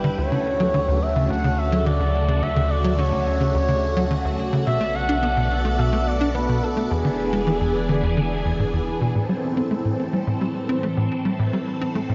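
Heard through a vast, echoing cathedral reverb on dulled cassette tape, this hypnotic, cosmic excerpt of sequencer-driven space music moves at 107 BPM over Dmaj7, Bm7 and E7 before shifting to Am at 9.2 seconds, with a tight, punchy sawtooth sequencer bass riff carrying delay and analog chorus, a bright, swirling phased string machine holding sustained chords up front, a deep, round sine sub bass that stops at 9.1 seconds, and a smooth, expressive synth lead with vibrato and chorus singing the melody until 8.6 seconds.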